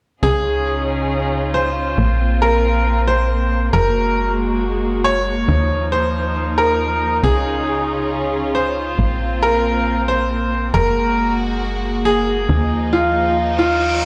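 Straight 4/4 at 137 BPM drives this uplifting, soaring trance excerpt in Db major, where a punchy, nasal sawtooth sequencer bass sits under sul tasto chamber strings holding sustained chords through a low-pass filter, a brilliant, slightly worn grand piano plays a second line through tape echo, an electronic reverse cymbal enters at 13.5 s, and the mix is heard played on a big sound system in a bare stone room.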